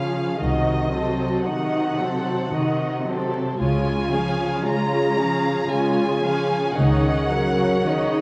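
An up-front viola section carries expressive, vibrato-laden accompaniment beneath a focused, smooth-topped violin melody and a softly attacked second violin line shaded with portamento, while a distant, even cello section and a close double bass section (entering at 0.4 seconds and stopping at 7.7) anchor this serene, lyrical slow romantic movement for string orchestra, a rubato passage in 3/4 cut from a longer piece and bathed in wet concert hall reverb with a dark, warm production and vinyl crackle.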